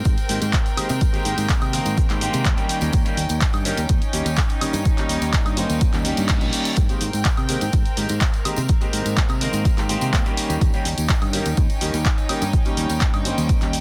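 A straight groove drives this sunny, feel-good slice of filtered disco house, cut from a longer piece, with a punchy, tape-warm electronic kick sitting up front. A punchy analog drum machine, re-recorded in a small room, adds cabasa, handclaps, hi-hat and woodblock, and a tambourine stays close, dry and in the background, both pumping with sidechain. A dark, round fingered electric bass, given tube saturation, and a clear, natural grand piano treated with phaser share that sidechain pumping as the harmony moves between a major ninth chord and a dominant seventh. Above them, a chamber violin section holds sustained chords with light vibrato and a reedy, gut-string, period-style tone, roughened by vintage 12-bit sampler grit. A brief electronic reverse cymbal sweeps in from 6.0 to 6.8 seconds, and the whole mix is dry, dense and heavily limited in a modern way.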